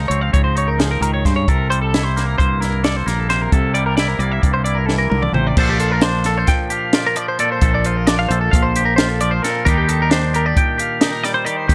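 Set in a straight 9/8, this playful, wistful math rock and midwest emo excerpt moves through lush, jazzy chords, shifting at 5.6 seconds after a short drum fill into a second section. A twangy electric guitar carries the accompaniment while a bright, compressed twelve-string electric guitar spins clean picked arpeggios above it, and a round, dark fingered electric bass sits up front. A compact cocktail drum kit with a high-tuned snare, punchy kick and dark cymbals keeps everything close and dry, with little reverb.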